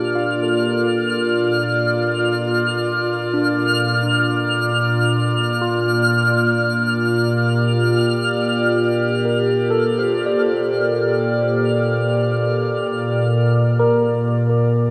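A warbling, nostalgic pad of detuned sawtooth and triangle tones sits up front, holding sustained chords through chorus, phaser and its own reverb in this luminous, warm ambient fragment in free time and Bb major, moving from Bb to Bbmaj7 at 6.1 seconds. A bright, barky tine electric piano heard through a combo amp plays clean arpeggios with phaser and diffuse ambient delay, while a sparkling granular FM texture adds an octave-up shimmer high above until 13.3 seconds. A wet, lush hall reverb and a cassette tape recording wrap the whole mix.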